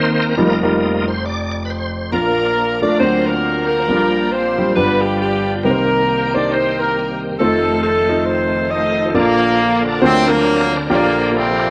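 A shouting, key-clicking tonewheel organ takes a solo at the start over woody upright piano, its slow rotary speaker and chorus vibrato adding motion to this jubilant, uplifting uptempo gospel excerpt in Bb major at 137 BPM with a swung feel. At 2.1 seconds a punchy, tightly octave-doubled horn section and a vibrato-laden pop-style alto saxophone carry the melody together over sustained organ chords. The sax drops out at 9.1 seconds while the horns, organ and piano continue, all in a roomy echo-chamber reverb.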